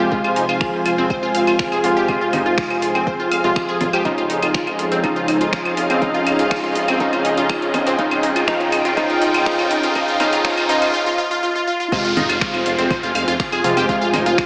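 Driving, dark melodic techno excerpt in which a bright, up-front unison pluck plays phased arpeggios over lush background pad chords, punchy brassy stabs, veiled muted strings, a fat, very quiet analog bass and an evolving drone that stops at 10.9 s, while overdriven kick and deep house percussion with metallic hats, claves, congas and finger snaps push through a build-up, a faint riser and downlifter entering at 7.6 s and a brief break into a drop at 11.9 s, all bathed in dreamy plate reverb with a small-speaker sound.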